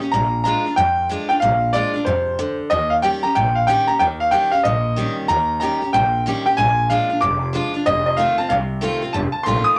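A swung 186 BPM rockabilly groove in Bb mixolydian drives this retro, rollicking excerpt from a longer piece, where a brilliant, up-front upright piano carries the high melody over a picked, full-bodied dreadnought acoustic guitar and a thumpy, woody pizzicato upright bass on gut strings, moving through Bb7, Eb7 and F7 in light reverb.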